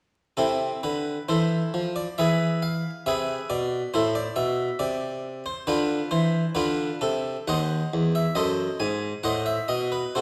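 Classical baroque-style suite movement in A minor at 68 BPM in 4/4 with a flowing, solemn, rubato feel, played by a solo Italian-style harpsichord that sounds up front, close-miked and round, its plucked single set of strings spanning D#2 to G#5 from 0.4 to 10.2 seconds through chords moving from Am/C and E to Dm13 and D#dim7, set in a wet recital hall reverb with vinyl crackle in this short cut from a longer piece.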